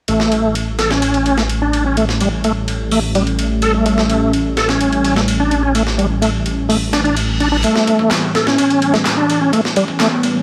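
Gritty and funky, this breakbeat cut from a longer piece runs at 127 BPM in a straight 4/4, sitting on an A7 chord with a dry, crackly hardware sound and a light reverb. A sampler-style drum kit drives it with a thumpy kick, a medium-tuned snare, hi-hat and ride, compressed and tape-warm as if re-recorded in a small room, with high-pass filtering on each drum and the room. Up front, a bright, reedy tonewheel organ plays a riff through a fast rotary speaker with chorus vibrato, key click and analog delay. Alongside it, a thick, menacing detuned saw bass holds A1 until 7.6 s, while a swirling, nasal analog pad sustains chords with phaser, chorus and sidechain pumping. From 7.6 s a build-up begins: the organ gets a filter sweep and a very quiet reverse cymbal and riser, which entered at 6.9 s, carries on. Overdriven, layered electronic handclaps join in the background at 8.1 s, sounding as if re-recorded in a large room.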